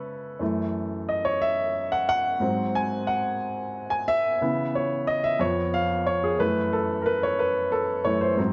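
Solemn and fervent, this short gospel excerpt, cut from a longer piece, is a solo baby grand piano moving in a slow 6/8 at 60 dotted-quarter beats per minute, with a straight feel and tuning slightly sharp at A4 = 441 Hz. The piano sounds natural and up front, ranging from F2 to G#5 as it moves through F#m7, G#7, C#m7 and Fdim before returning to F#m7 at 6.4 seconds. A moderate echo-chamber reverb gives the whole 8.5 seconds a lingering glow.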